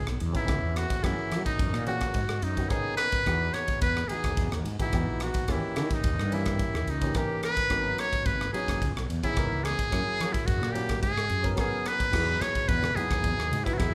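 A straight 4/4 groove at 108 BPM drives this nocturnal electric jazz fusion excerpt, with a crisp, punchy drum kit of kick, rim click, ride and crash up front and a growly fretless electric bass holding the low end. A brilliant, buzzy trumpet with a metal mute carries the melody with vibrato, close-miked and forward, while a polished grand piano accompanies over chords moving through C#m7, F#9, G#m11 and Emaj7. Low-tuned, damped congas join in the background at 12.1 seconds, and the band sounds live in one room inside a moderate large studio reverb.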